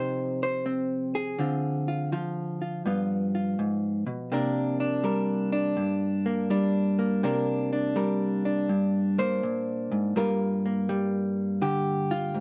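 Solo jazz in C minor at 82 BPM, a smoky, swinging excerpt featuring a vintage hollow-body jazz guitar, electric, clean and picked, sitting up front with a compressed, dark tone across its range from G2 to C5. The harmony moves through Fm7, Dm7b5 and G7b9 to a resting Csus2, then shifts to Gm7 at 10.1 seconds as a new section begins. Light reverb and a dark, warm production round out the short cut.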